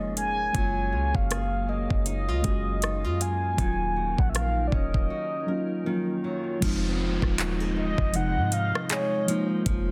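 A mellow, horn-like synth lead with chorus and digital delay carries a longing melody over muted, felt-like synth keys, a glassy FM pad pumping in the background, fingerpicked flamenco guitar arpeggios with delay and a deep, boomy 808-style bass in this moody contemporary R&B excerpt at 79 BPM with a swung 16th-note feel, as a smooth electronic drum kit with a knocking kick, metallic hats, handclaps and rim clicks joins at 0.2 seconds and a background downlifter arrives at 6.6 seconds, all under a dense, heavily limited modern master.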